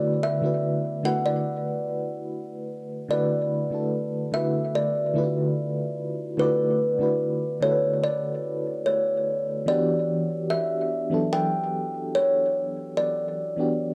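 A plucked kalimba carries the melody up front, its woody, ringing tone colored by cassette tape grain and an analog delay as it moves between B4 and G5. Beneath it, an FM electric piano with tremolo supplies the accompaniment from D3 to D5, sounding mellow and vintage with a warbling character, a noise layer and a phaser sweep on its fast-attack, decaying notes. This moody, sensual R&B piece moves at a slow 73 BPM in 4/4 with a straight feel, set in E dorian. The harmony rests on D6 before shifting to Em7 at 9.7 seconds, where a new section begins. A moderate spring reverb and the soft haze of a home cassette recording give this short cut from a longer piece, lasting 13.9 seconds, an intimate, lo-fi atmosphere.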